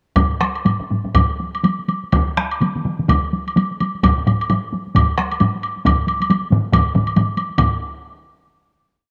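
Up front, a solo taiko part struck with hard sticks sounds compressed and saturated, driving a repeating pattern beside a woody woodblock pattern, while several heavy-stick taiko ensembles fill out this powerful traditional Japanese drum piece: one close and dry with its own repeating pattern, others in a small room playing taiko phrases, one of them set in the background. One of these ensembles enters later, at 2.1 s, the swung 4/4 groove speeds up throughout, and the short piece closes on a final hit from 7.6 s. A moderate spring reverb and small-room ambience give the drums a driving, physical presence.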